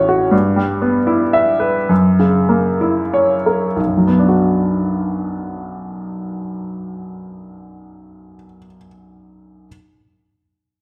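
A clear, natural baby grand piano sits up front in this brief cut from a longer romantic character piece for solo piano, moving in 6/8 with free rubato and a bittersweet, brooding mood. The playing slows through the opening 3.8 seconds, passing from Em/G to F#7 before settling on Bm as a new section begins, with the piano ranging from deep bass up into its middle register. A wet recital hall reverb surrounds the instrument with a lingering, spacious bloom.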